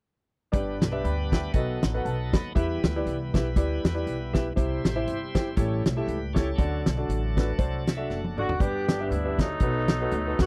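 A natural country drum kit leads the mix, its fat snare and punchy kick sitting up front in a small-room sound with hi-hat and toms, and a drum fill arrives at 8.1 seconds. This uptempo gospel excerpt moves at 119 BPM in 4/4 with a swung eighth-note feel in G major, and the mood is soulful and uplifting. A concert grand piano with deep bass accompanies up front beside a woody pizzicato upright bass, while a bright tonewheel organ holds full, shouting, lightly overdriven chords through a slow rotary speaker, key click audible, until 8.9 seconds. A warm, tight, vintage horn section with light vibrato takes the melody in jazz style from 8.4 seconds. The chords move from G through B7, Em, C, A7 and D before returning to G and B7, heard in a dry, close 1970s-style studio recording with little reverb.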